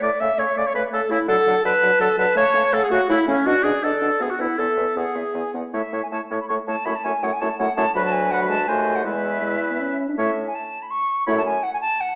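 A quick, cheerful classical-period movement for wind quintet in triple time, played with a spirited, rubato feel in a brief passage cut from a longer piece. The concert flute carries the melody with an airy, tongued tone and vibrato, sounding somewhat distant, while the oboe sings a second line with light vibrato and a smooth top. Beneath them, the clarinet offers soft-attacked accompaniment, the French horn adds a mellow, roomy cushion, and the bassoon anchors the bass with light vibrato from a distance. The harmony moves through chords such as D, Bm, E and F#m7, with a D#dim7 adding a touch of colour before the cadence on A. The ensemble sits in a reverberant recital hall ambience, heard through a small speaker sound, and once the others stop, the flute lingers alone until 12.2 seconds.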